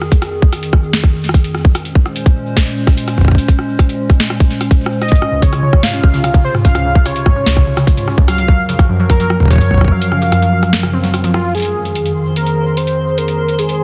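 A dense, heavily limited modern master with light reverb frames this cerebral, intricate IDM excerpt, cut from a longer piece and moving at 147 BPM in a straight 4/4 in F phrygian. A warbly, tape-like pad built from square and triangle waves holds dark, nostalgic sustained chords throughout, treated with chorus, built-in reverb and sidechain pumping, as the harmony moves from Fm7 through Bbm9, Dbmaj7 and Gbmaj7 before returning to Fm7. A booming analog drum machine with a crisp snare, rim click and metallic hi-hats runs the whole way through a digital delay, while a tight, up-front electronic kick, re-recorded in a small room, drives the groove until dropping out at 9.9 seconds. From 5.0 seconds a velvety sawtooth-and-sine lead with a sub octave and vibrato carries the melody, joined almost at once by a nasal, dusty pluck spinning chorused arpeggios through a filter sweep. The band hits an accent at 11.3 seconds, and in the closing stretch a twinkling granular texture adds an octave-up, sparkling FM shimmer on a single high note.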